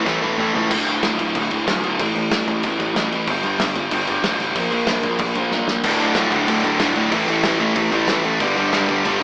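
Two overdriven guitars strike at once, a dark, sludgy one and a bright one, as the loose indie drum kit rolls through a fill and a growly fuzz bass joins, launching an upbeat, energetic punk rock cut from a longer piece. The bright guitar drops out at 0.7 seconds while the sludgy guitar and bass drive a riff over D5, A5, G5 and Bb5, with the acoustic drums sounding fat in the snare, punchy in the kick and dark in the cymbals, set in a pumping room. After another drum fill, the bright guitar returns at 5.8 seconds, and the whole band sounds like it is playing live in one room under light reverb with an AM radio tone.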